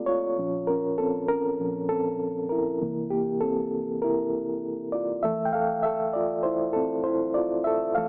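A mellow, reedy electric piano plays alone from the very start, its clean tone shimmering with fast tremolo through a small speaker sound and bathed in a moderate plate reverb, moving from Bbmadd9 to C7 before settling on Fmaj7 at 5.2 seconds in this romantic, straight-feel soul fragment cut from a longer piece.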